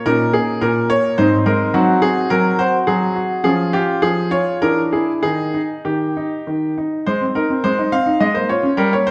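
A clear, open baby grand piano with a long sustain sits up front in a wet recital hall, where a reverb of 1.4 seconds lends each note a churchlike glow. This short excerpt from a classical-period sonatina in Ab major moves in 3/4 at roughly 95-109 BPM, with a rubato feel that lets the tempo breathe. The solo piano spans Ab2 to F5, and its mood is elegant and playful. The opening passage starts on an Eb5 over Bb and moves through Ab and Ab7 harmonies to Db and then a colorful E7, before a brief unharmonized moment at 5.2 seconds. A new passage begins at 7.1 seconds, returning to Ab and settling on Bbm7 over Ab before the cut at 9.1 seconds.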